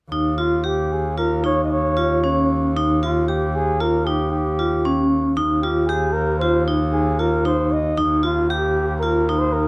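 Close, detailed miking with little reverb puts this short cut from a longer piece of contemporary chamber music in sharp focus: a playful, restless 5/4 groove at 115 BPM in Eb mixolydian, tuned to A4 = 436 Hz. Up front, a metallic, ringing vibraphone with medium hard mallets and a medium motor vibrato plays arpeggios, while a single bowed double bass holds a clear, intense Eb2 with light vibrato. From 0.4 seconds a mellow, punchy flugelhorn sings a pop-style solo melody that sounds distant and roomy, and the harmony moves from Eb7 to Ebadd9 at 5.4 seconds.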